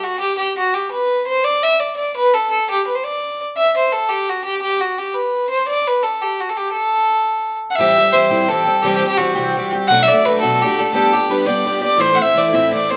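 Celtic folk jig in A dorian, cut from a longer piece, driving and wild at 114 dotted-quarter beats per minute in 6/8. A single bowed fiddle with a nasal, reedy gut-string tone plays the melody up front on its own until 7.8 seconds. A bright, boxy picked twelve-string acoustic guitar then enters with shimmering octave-doubled accompaniment through Am7, C, Bm7, G and Am, while the band's live-in-one-room sound sits in a large studio reverb.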